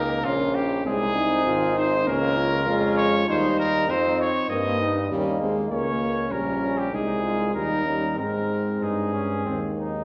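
Heard from further back in a recital hall, this brass quintet sits in a generous, wet reverb that lingers for about 1.4 seconds. It is a classical passage in Ab major at 98 BPM in 4/4, played with a rubato feel and a triumphant, noble mood, cut from a longer piece. The trumpet carries the melody up front with a mellow, vintage tone, while the flugelhorn adds a smooth-topped second line from the background. The French horn, close-miked and warm, shares the accompaniment with a trombone that sings with light vibrato in the background. Underneath, the bass trombone anchors the ensemble from up front, its own gentle vibrato giving the low end a rounded presence. All five parts play together from 0.0 to 10.0 seconds through a stately progression that begins on Gdim/Bb and moves through Bbm7/Db, Eb and Eb7 before arriving home on Ab at 8.2 seconds.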